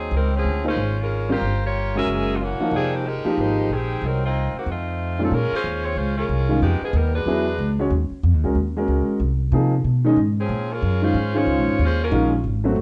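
Big band swing jazz in F minor at a brisk 185 BPM with a swung feel, this brassy excerpt moves to B-flat minor at 5.3 s over rich extended chords. A clear saxophone section carries the melody with a light vibrato and plate reverb, pausing at 7.8 s before returning at 10.4 s. Beneath it, a woody, thumpy pizzicato upright bass and a concert grand piano with deep lows, entering at 0.6 s, sit up front, all coloured by a worn, warbling old-tape sound.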